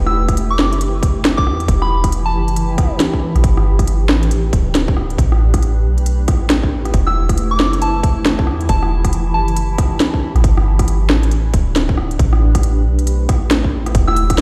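A blurred, granular cloud pad and a deep, round 808-style bass open this nocturnal, melancholic future garage excerpt in E minor, both pumping with sidechain as the chords move from Em to G to Am7. A soft FM synth bell enters at 0.1 seconds with a pure, warbling tone, thickened by chorus, vintage 12-bit grit and dub echo, and it returns at 7.1 seconds in the high register above the pad. An organic electronic kit brings a woody snare, crisp hats and rim clicks, and a tight kick joins at 0.3 seconds. Both are overdriven, and the 16ths swing at 137 BPM. The bass and the kit sit up front, while the evolving pad drifts behind them in its own reverb. Light digital ambience and a stone-room reverb, from playback on a big sound system in a bare room, lend the piece a cavernous, late-night air.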